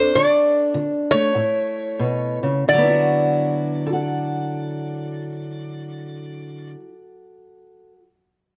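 A dry, close recording with a small-room ambience and a 1970s studio character frames this short cut from a longer acoustic country blues piece, rollicking yet soulful, with a swung feel in 4/4. A metal-body resonator slide guitar carries the melody up front, its tone mellow but metallic and nasal, played with fingerpicks and a slide in a narrow upper register. Beside it, a fingerpicked steel-string parlour guitar supplies the accompaniment, also up front, sounding dark and boxy as it spans from low bass notes to high treble. The opening passage slows down over its first 2.7 seconds before the music moves into a new section, where the harmony settles onto a rich six-nine chord. The slide guitar drops out at 6.7 seconds, leaving the parlour guitar to carry on alone until 8.0 seconds.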